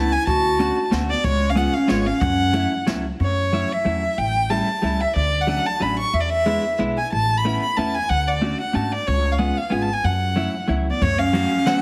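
A rich, smooth violin sings the bittersweet, nostalgic melody of this swung musette waltz, joined at once by a bright, close-miked clarinet line, a clean hollow-body electric guitar and a woody, growly pizzicato upright bass, while a brushed drum kit with dark cymbals and a punchy kick plays from 0.3 s until 3.0 s and returns at 11.0 s alongside the clarinet, all heard through a moderate recital-hall reverb and a heavily compressed, radio-like sound in a fragment cut from a longer piece.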